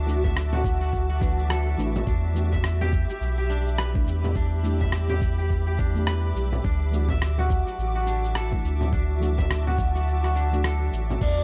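Up front sits a round sub bass with a fast attack, sustained and mellow under an organic downtempo groove at 105 BPM in 4/4, swung on the sixteenths, with a mystical, hypnotic mood. Bright, crisp fingerpicked kora arpeggios ring through an analog delay, while a cloudy granular pad drifts in blurred, detuned sustained chords and a dark, soft chord stab with a filter sweep sits in the background, both pumping against the sidechain. The drums are gritty and compressed in a sampler style, a thumpy electronic kick with a dusty soul kit of cabasa, crash cymbal and rim click, re-recorded in a large room, while an acoustic frame drum stays in the background. The harmony moves from Dadd9 to Em7 at 2.1 seconds and back to Dadd9 at 6.6 seconds, and the kick drops out at 10.1 seconds. At 11.2 seconds a breathy, flute-like synth lead with vibrato and a vintage warble enters up front, just as this short cut from a longer piece ends, all captured dry on gritty hardware and cassette tape.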